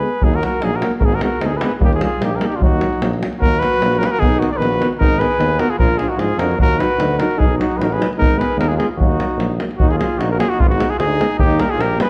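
Balkan brass band folk in Eb harmonic minor at 150 BPM in 2/4, restless and bittersweet, with a slight swing on the sixteenths, cut from a longer piece. A mellow cornet carries the melody up front over a flugelhorn second line, while euphonium and French horn, both with light vibrato, sit in the background as accompaniment, and a clear tuba holds the bass from 0.2 s alongside a deep, compressed, saturated davul. The production is dark and warm in a moderate recital hall reverb, with chords moving among Ebm, Abm, B and Bb before the opening material returns at 9.8 s.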